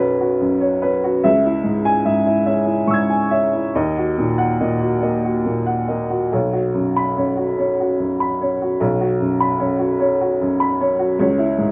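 A woody, boxy upright piano sits up front and plays alone through this 11.7-second fragment of a longer piece, a peaceful, tender neoclassical minimalist study in B major, taken at a rubato 46-50 BPM in 6/8, whose long-sustaining notes span B1 to G#6 and move from Bsus2 through C#m and D#m back to Bsus2 in a light reverb.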